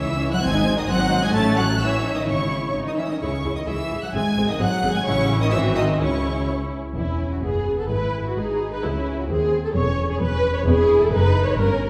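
Up-front violas carry the accompaniment with expressive portamento in this urgent, stormy classical-period string orchestra passage, cut from a longer movement. High first violins sing the melody with the same sliding vibrato, while lush, more distant second violins thread a second line beneath. Smooth, even cellos and focused double basses anchor the bass with rich, bowed tone, the whole ensemble set back in a wet concert hall before the harmony brightens at 7.0 s.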